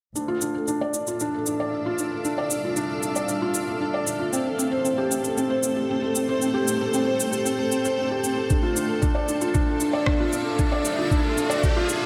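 Bathed in a lush hall reverb, this melancholic, hypnotic piano and strings electronica excerpt at 115 BPM in D minor builds steadily: a soft, felt-muted upright piano riff with digital delay sits up front over a blurred granular cloud pad with sidechain pumping, a distant bowed double bass section in the background and an overdriven electronic shaker and rim click, before a muffled, thumpy kick drum arrives at 8.5 seconds and an electronic riser enters at 9.3 seconds.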